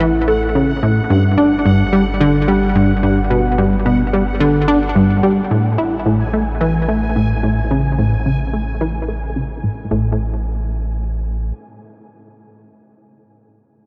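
Cosmic and expansive, this short cut from a longer piece of ambient, sequencer-driven space music rides a straight 4/4 pulse over chords moving from A to Gmaj7 and then Amaj7. A punchy, funky analog bass riff with a fast, decaying filter pluck sits up front under subtle chorus and delay, gaining a filter sweep from 5.5 to 9.9 seconds, while a round, mellow sine sub bass sustains beneath it until 11.5 seconds. Above them, a bubbling, resonant texture of detuned sawtooth with random filter steps drifts with chorus and its own reverb, all set in a dark production with a huge ambient reverb that lingers after the harmony drops out at 9.9 seconds.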